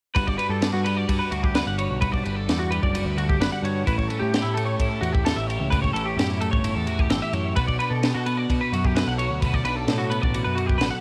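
A dry home recording on cassette frames this brief, bright cut of math rock and midwest emo, moving at 130 BPM in a straight 4/4 in G lydian through Gmaj7, A7 and Bm7. Up front, a clean, twangy electric guitar spins intricate picked arpeggios, thickened by ensemble chorus and tape echo, while a shimmering twelve-string electric guitar fills in compressed accompaniment beneath it. A growling, round, overdriven picked bass and a compact cocktail drum kit with a punchy kick, high-tuned snare and dark ride cymbal drive the piece from 0.2 seconds.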